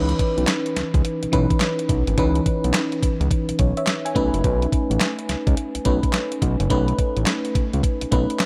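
New jack swing R&B at 106 BPM in C# minor, tuned slightly flat to A4 = 439 Hz, this punchy, confident excerpt rides a 16th-note swing as it moves from C#m9 to B9 at 4.2 seconds. A glassy, bell-like FM electric piano with chorus sits up front over a fat, saturated sawtooth analog bass. A crisp 8-bit drum machine with a thumpy kick, medium-tuned snare, hi-hat and handclaps joins at 0.1 seconds, with light reverb around the mix.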